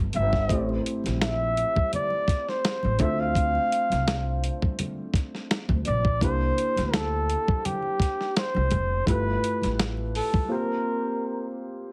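A heavily compressed, radio-like sound with light reverb frames this introspective, soulful neo-soul excerpt at 84 BPM, where a breathy, whispered flugelhorn with scooped notes, vibrato and slapback echo carries the melody up front over a dark upright piano with audible action noise, slightly detuned and bathed in plate reverb. A growly, woody pizzicato upright bass and a gritty sampler-style drum kit with a thumpy kick and medium-tuned snare sit close, while very quiet, bright congas add a thin-skinned live-room texture. The chords move through Am7, Dm7, C9 and G13 before the bass drops out at 10.2 seconds and the drums and congas follow at 10.5 seconds for a break on C7sus4, leaving the piano and flugelhorn.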